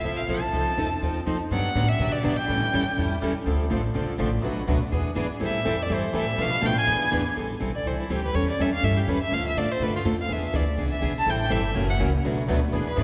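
Swinging and fiery, this fragment of acoustic jazz manouche races along at 246 BPM in A minor, with a rich, focused violin playing the melody over a woody, thumpy pizzicato upright bass on gut strings. Two bright picked guitars provide the accompaniment: a steel-string with fresh strings and an archtop with audible finger squeak that drops out at 7.2 seconds and returns at 11.3. The violin, bowed with vibrato and slightly boxy, takes a solo from 7.4 seconds, all set in the long, wet reverb of a concert hall.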